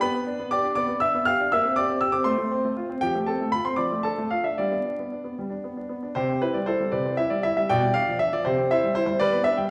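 Elegant and cheerful, this brief passage cut from a longer classical-period piano sonatina moves in 6/8 with a free, rubato feel. A clear, polished baby grand plays alone throughout, sitting up front and present, and spans from B2 to F6 as it moves from its opening section into a second at 6.2 seconds. Around it, a wet recital hall reverb gives the sense of listening from further back in the room, with vinyl crackle underneath.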